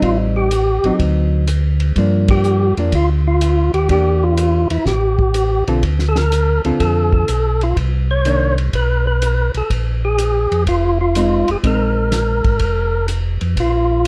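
A swung 124 BPM groove in 4/4 drives this greasy, soulful soul jazz organ trio excerpt, where a fat, percussive tonewheel organ with key click and fast rotary speaker sings the melody up front, a dark hollow-body jazz guitar comps until 13.0 seconds, a round tonewheel organ with slow rotary speaker carries the bass, and a tight soul drum kit with a fat snare and dark cymbals sits back in a dim production, with a band accent at 2.2 seconds over chords such as Am7b5, D7b9 and Gm7.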